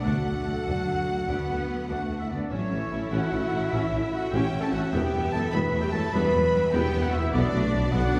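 Mellow French horns hold sustained chords as the most prominent part of this determined, adventurous cinematic passage, a fragment cut from a longer piece in E dorian at 100 BPM in 12/8. A rich, lush violin section carries the melody with vibrato from 0.1 seconds. A second line is shared between a clear, distant oboe, a very quiet, airy flute group and a background violin section with a smooth top. Beneath them, a smooth, even viola section supplies accompaniment while a faint concert harp rings out fingerpicked arpeggios. The low end rests on an expressive cello section, a bowed double bass section and a background tuba with light vibrato, moving through D, A, Emadd9 and Bm. Timpani with soft mallets add a barely audible, round fill from 7.3 seconds to the close at 8.2 seconds, and the ensemble sits in a wet scoring stage reverb, heard from further back in the room.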